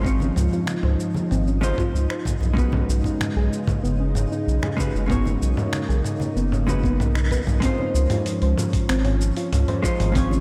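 A straight, unhurried groove in four rests on a thumpy, gritty electronic kick and a dusty sampler-style kit of finger snaps, hi-hat, shaker and toms, both compressed and carrying the boxy color of a small room, while very quiet congas struck with hard hands ring from a distant, larger space. This warm, smooth sunset chillout piece sits on a round, deep analog bass placed up front, which anchors the harmony as it moves from Dbmaj7 to Cb69 at 2.6 seconds and back to Dbmaj7 at 7.6 seconds. A dark, clean hollow-body jazz guitar plays picked accompaniment through analog delay and shimmer reverb, and a silky, warbling string machine holds mellow sustained chords with slow attack, ensemble chorus and shimmer. Behind them, a soft, full-bodied pluck spins arpeggios with chorus, delay and shimmer, its tone shaped by a filter sweep that runs until 7.6 seconds. The band lands a brief accent just before a new section opens at 7.6 seconds, and the whole dreamy mix is soaked in a lush hall reverb, cut from a longer piece.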